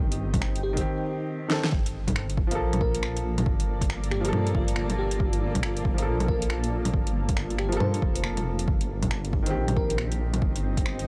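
A dry, gritty hardware recording laced with vinyl crackle carries this melancholic, nocturnal future garage fragment in G minor at 138 BPM with a 16th-note swing, where an up-front overdriven deep house kit of fat snare, metallic hi-hats, bongos and finger snaps and a punchy overdriven electronic kick sit over a menacing, dark detuned saw bass with a filter swell, while a soft felt-muted upright piano with tape echo and sidechain pumping and a blurred, bright granular cloud pad with its own reverb, tucked in the background, hold the Cm/G and Gm9 chords, a bell-like FM electric piano enters at 0.6 s with sparkling chorus, tremolo, 12-bit sampler grit and tape echo, and a drum fill at 1.5 s leads into a band accent.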